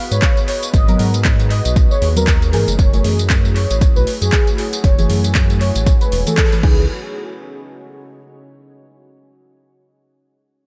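A velvety synth lead with chorus and tape echo opens this late-night, hypnotic deep house excerpt at 117 BPM in C# minor, over a breathy pad and a silky, very quiet string machine; a round analog bass pumps beneath an overdriven, up-front kick and a drum kit of metallic hats, handclaps, tambourine and crash, a mellow chord stab with phaser enters at 0.9 s, and a moody ambient pad carries on alone after 6.9 s, as the chords move from G#m9 through F#m9 to C#m9 in a dry but echo-heavy mix.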